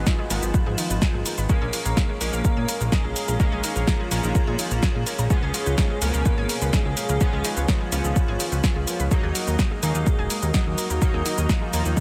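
A moody analog pad, edgy sync-sweep polysynth stabs with delay and a fat, saturated analog bass open this dramatic, melancholic melodic techno excerpt at 126 BPM, soon joined by a thick detuned unison lead, an airy, dreamy second line with vibrato and portamento, nasal wave-folded pluck arpeggios, an overdriven deep kick up front and a punchy, tape-toned drum machine's hi-hat, shaker and snare, while sidechain pumping breathes through the synths and bass over a G#m7, A#m7, C#7, D#m progression in light digital reverb.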